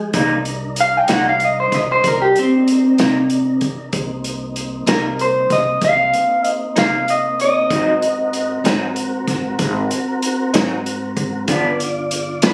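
A brooding, smoky slow blues in 12/8 opens with a slightly broken-up, picked electric guitar from a small old amp playing a clean solo up front with plate reverb, over sustained tonewheel organ chords with key click, chorus vibrato and a slow rotary speaker, and a woody, dark pizzicato upright bass. At 0.1 s a second, compressed lo-fi guitar adds accompaniment with harmonic tremolo, and a muffled vintage drum kit brings in hi-hat, tight kick and a medium-tuned snare. The harmony moves from Cm7 to Ab7 and then G7 in this short cut from a longer piece, captured on a phone in a moderate club room.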